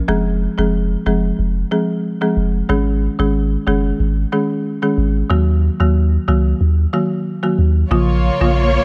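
This short excerpt from a longer dancehall piece opens with a folk marimba and a punchy sub bass entering together, setting a hypnotic, tough mood at 92 BPM in a straight 4/4 feel, in Bb minor. The marimba, struck with medium hard mallets on hardwood bars, carries the accompaniment with a woody, rustic tone that sits dry and up front, ranging from Db3 to Ab4. Beneath it, the sub bass is deep and sine-based, with a pitch-drop attack that gives each note its punch before it sustains in a mellow way. The harmony moves through Fm, Absus4 and Ebm before landing on Bbm at 7.9 seconds, just as a dark studio string section arrives with lush, bowed sustained chords marked by expressive vibrato and a smooth top. The marimba stops at 8.6 seconds, leaving the strings and bass to carry the final moment in a studio reverb.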